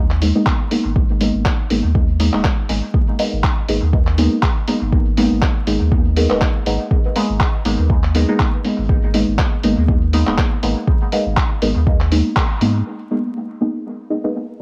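A swung 16th-note groove at 121 BPM in 4/4 drives this deep, hypnotic dub techno excerpt in G# minor, built around a single G#madd9 chord. An overdriven electronic kick sits up front, layered and deep, with small room reverb and a cassette tape tint, while a muffled, pitched-down sampler-style kit adds handclaps and low-pass filtered hi-hats soaked in dub echo. A round sine sub bass pumps under sidechain compression, its sustained, mellow tone anchoring the low end. Above it, a soft, nasal chord stab with a filter pluck and short decay moves through chorus, phaser and dub echo, pumping with the sidechain and carrying a dark, cassette-tinted character. The whole band hits an accent at 12.4 seconds; the rhythm section drops away by 12.8 seconds, and the stabs carry on alone until 14.6 seconds. The sound has the light reverb and vinyl crackle of a home cassette recording.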